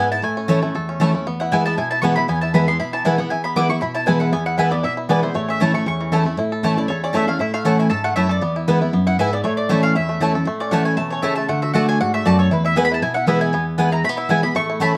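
This driving, rustic bluegrass piece, cut from a longer performance, opens with the whole string band playing at once. A full-bodied, up-front dreadnought steel-string guitar picks the accompaniment. A twangy, percussive banjo played with fingerpicks adds a melodic line beneath a bright, woody mandolin melody. A second picked mandolin with double strings plays stabs through a slapback echo, while the chords move between A and E with a turn to D late on. At 6.4 seconds a new section begins, and the mandolin takes a solo that carries through to the end at 15.0 seconds. The production is dark and warm, and a moderate studio reverb gives the band a snug room sound.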